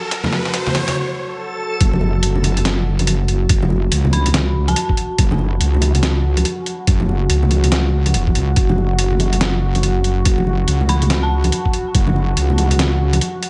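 Meditative and dark, this deep dubstep excerpt opens with a short build-up in which an electronic riser and a reversed, dreamy swelling texture sit over a moody, detuned analog pad with chorus, as a muffled, overdriven sampler-style trip hop kit of hi-hat and snare and distant congas and bongos with dub echo join. At 1.8 s the half-time drop arrives: a heavy, saturated wobble bass sits up front alongside a thumpy, pitched-down electronic kick with small room reverb. An eerie, inharmonic FM synth bell with tremolo and dub echo drifts in the background at 4.1 s and again at 10.9 s.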